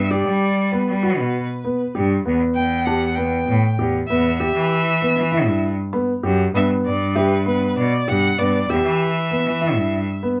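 Set in a straight, uneven 7/8, this urgent yet pensive fragment of contemporary chamber music pairs a clear, focused bowed violin melody over a bright, biting cello bass line and mellow grand piano arpeggios with audible action noise, while a woody, airy kalimba adds background texture from 2.9 to 8.5 seconds, all captured closely and drily as the harmony moves from Gmaj7 through Em and G back to Em.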